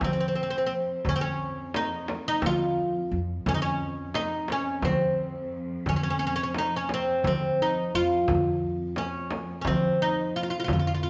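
A straight seven-beat pulse in 7/8 drives this short passage from a Turkish makam ensemble, cut from a longer piece, and its mood is hypnotic and full of longing. Up front, a fretless oud with doubled strings carries the melody, its plectrum-plucked tone sounding warm and woody in the middle register. Beneath it an upright bass plays pizzicato with a growly, steel-strung bite, while a bowed cello section holds a single low drone in the background with soft attacks and gentle vibrato. Two hand drums sit behind the ensemble: a crisp, metal-shelled darbuka played with soft hands and a close, dry sound, and a deep, large frame drum struck with hard hands, given a compressed, saturated weight, which drops out at 10.8 s, just before the others stop at 11.1 s. A moderate recital-hall reverb of a church or concert hall, lasting about 1.4 s, wraps the group in a resonant space.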